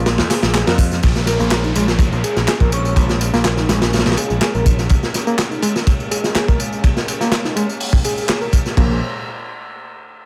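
Breakbeat with a raw, swaggering strut, built on a gritty, saturated acoustic break kit with a tight kick and dark cymbals, layered with an electronic garage kit of handclaps, tambourine and metallic hats, while a growly picked electric bass sits up front until 4.9 seconds and returns at the close. A reedy, slightly out-of-tune electric piano riff runs throughout with overdrive, fast tremolo, a low-pass filter and delay, over a swirling sawtooth pad in the background that pumps with sidechain under phaser and chorus. A downlifter sweeps in from 1.0 seconds, and an airy, dreamy lead with vibrato and a small-speaker tone drifts briefly behind the groove, all in a dry, close sound.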